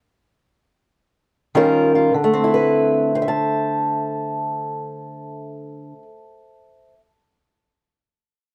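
Swung eighths in 4/4 carry this laid-back, gritty blues excerpt, which slows down over its first 2.1 seconds as a lone fingerpicked, old ladder-braced acoustic guitar enters up front at 1.5 seconds with a dark, woody, boxy tone from old strings, moving from Eb9 to Dsus2 and ringing until 7.1 seconds in a moderate studio ambience.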